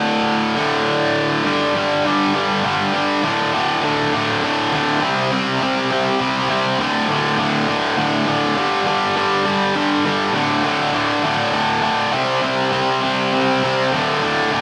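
A tight, bright electric guitar carries this short rock excerpt on its own, picked and distorted, double-tracked and placed up front, with a slapback echo clinging to its attack. The mood is brooding yet cathartic, moving at 101 BPM in a straight 3/4. The guitar spans D2 to C4, cycling through D5, G5 and C5 power chords that keep returning to D5, with the second passage beginning at 1.5 seconds and running to the cut at 14.6 seconds. A lush hall reverb with a long 2.1 second tail surrounds the part, lending the lone instrument a big arena sound.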